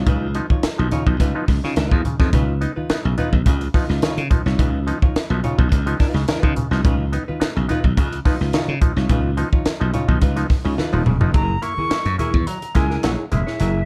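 A dark, lightly reverberant production frames this gritty funk excerpt at 106 BPM in Db mixolydian, built on a Db9 groove. Up front, a crisp fusion drum kit with a punchy kick and high-tuned snare pumps in a small room beside a glassy, growly slap bass. A clean hollow-body jazz guitar plays accompaniment, an overdriven, nasal clav adds stabs through slapback echo, and very quiet, thin-skinned congas add bright colour. After a drum fill at 10.8 seconds the harmony shifts to Gb9, and an airy silver concert flute with vibrato takes the melody from 11.4 seconds, also carrying slapback echo.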